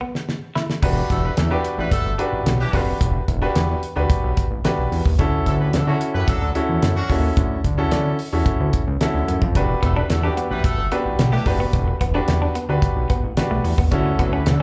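A thick, saturated analog bass with a filter pluck holds down the low end of this late-night, funky early-eighties boogie funk excerpt, over a dry, damped 70s drum kit with a fat snare and tight kick, natural baby grand piano accompaniment with slapback echo, a distant, roomy horn section with vibrato carrying a second line from 1.1 seconds, and a clean hollow-body electric guitar riff heard briefly at the start and again from 9.7 seconds, the whole live gig coming through the venue's PA into a small club room.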